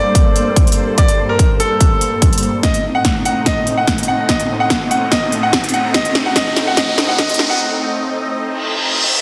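Heavy wobble dubstep at 145 BPM in a half-time 4/4 feel, this aggressive build-up opens on a bright concert grand piano melody with digital delay over a thick, detuned sawtooth-and-square unison pad that pumps with sidechain and carries chorus and phaser through Gmadd9 and Adim chords. A punchy, tape-touched electronic kick and a big-room dance kit with crisp hats and snare sit up front, re-recorded in a large room, driving a drum fill from 2.6 s while a filter sweep runs throughout and a riser enters at 4.5 s before a reverse cymbal arrives at 8.6 s. The dense, heavily limited master is bathed in a lush hall reverb.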